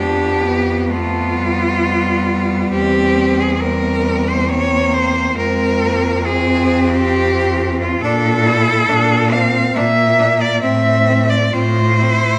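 A tender, lyrical classical passage for cello ensemble opens with all four cellos sounding together from the first moment, a short section taken from a longer piece in F minor. The pulse is a slow 68 BPM in 3/4, but the beats fall unevenly, with a flexible rubato that lets the phrases breathe. Up front, a single bowed cello carries the melody high in its range, its tone rich and focused with a smooth top and a singing vibrato. Beneath it, a second cello plays an even, smooth inner line, while a brighter, more intense cello with lighter vibrato supplies the accompaniment and drops out at 12.1 seconds, just before the others finish at 12.4 seconds. At the bottom, a close, up-front bass cello anchors the harmony, which moves through G7 over F, C7 over E, F5, Bbmaj7 and A minor. The players sit in a recital hall whose reverb, lasting about 1.4 seconds, adds a lingering bloom around the ensemble.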